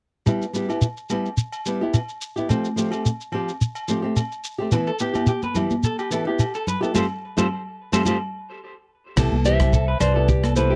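A dry, close recording with a 1970s studio feel and little reverb opens this joyful, danceable highlife guitar band clip, cut from a longer piece, moving at 108 BPM in 4/4 with a light swing on the sixteenths in C major. From 0.3 seconds an up-front, fingerpicked flamenco guitar lays down the accompaniment over a grainy shekere and faint, ringing agogo bells, moving through G6 and Fadd9 chords. At 4.7 seconds a clean, picked semi-hollow electric guitar adds high arpeggios touched with tape echo, and bright, high-tuned congas with a compressed, saturated edge follow soon after. The band hits an accent from 7.0 to 9.2 seconds before a new section lands on Cmaj7, where a round, dark fingered electric bass holds a low C and a tight funk drum kit brings bright cymbals, hi-hat, rim clicks and a tight kick. Just after, a dark, clean, fingered electric guitar steps forward with a melody in a higher register.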